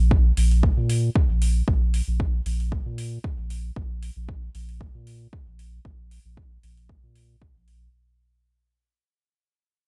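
Dub techno with a cavernous, meditative mood and a lightly swung 4/4 pulse, fading out across this short cut from a longer piece. A round, sine-like sub bass sits up front with a fast attack and long sustain, pumping under sidechain. Beside it a deep, overdriven layered kick carries studio reverb, while quieter metallic hi-hats carry the same grit and reverb, all within a dark, warm digital ambience touched by a faint mains hum.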